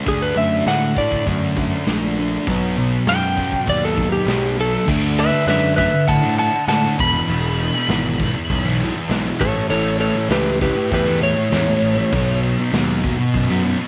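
A dark, slightly broken-up slide guitar carries the melody up front in this swaggering, raw garage rock excerpt at 100 BPM, sitting over a double-tracked fuzz guitar riff that runs from 0.0 to 13.9 seconds. An overdriven, fuzzy picked bass and a gritty small-room drum kit, with a punchy kick and rolled-off top, drive the chords from D and B into a new passage at 4.9 seconds that moves through D, E, A and back to B, all in light reverb.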